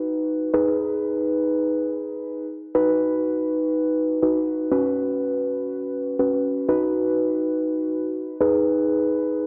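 Pop at 122 BPM in B major, this nostalgic, wistful 9.5-second fragment features solo muted, felt-like synth keys, soft and dark with a triangle-and-sawtooth tone, a noise layer, a filter sweep, fast attack and decaying notes, placed up front with chorus and slapback echo over a moderate lush hall reverb as the chords move through B, G#m and F#sus4.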